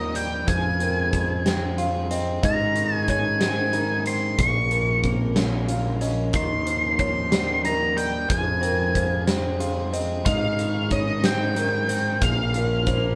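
A live band fills a damp stone room in this brooding, cinematic post-rock passage in a slow 6/8, cut from a longer piece. A fuzzed, distorted lead guitar sings its melody up front over a punchy arena drum kit with a fat snare, while an overdriven fingered bass growls beneath. A lo-fi, slightly broken-up electric guitar and a felt-muted upright piano, its action noise audible, weave arpeggios as a bright, earthy chamber string section holds bowed chords in the background through a cycle of Fm, Ab, Bbm and Ebadd9.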